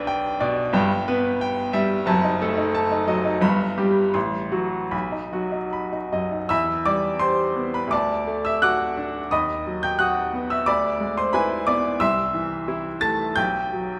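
In a flexible, rubato 2/4 that drifts between 73 and 91 BPM, this romantic character piece for solo piano moves with a bittersweet, stormy restlessness in E minor. A bright upright piano carries everything alone, spanning from a deep F#1 up to a brilliant A6, and its woody, intimate tone sits up front with audible action noise and long sustain. The opening passage, up to 6.5 seconds, threads through G/B, Em/G and diminished colours on F# and A before settling on B. From 6.5 seconds a second section begins on Em and presses through D, B/D#, E7/D and Am/C, finally landing on a bare B5 at 13.4 seconds. A wet recital hall reverb with a 1.5-second decay surrounds the piano, and the fragment is cut from a longer work.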